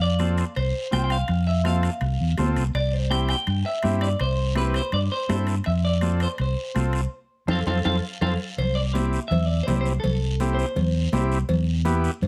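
A round, dark fingered electric bass sits up front in this sunny, joyful cumbia excerpt, which moves at 165 BPM in a straight 4/4 in C major. Above it, a twangy, picked clean electric guitar carries the melody with spring reverb and slapback echo, while a reedy combo organ with light vibrato fills in the accompaniment. The percussion includes high-tuned congas with a thin skin and hard hands sitting in the background, raspy guiro, and ringing timbales and cowbell with a metal shell. A drum fill and a band accent arrive together from 7.1 to 8.6 seconds, leading into a new section as the chords move from F and C to an Em near the close. The guitar drops out at 11.3 seconds, and the close, detailed, dry sound keeps every part crisp.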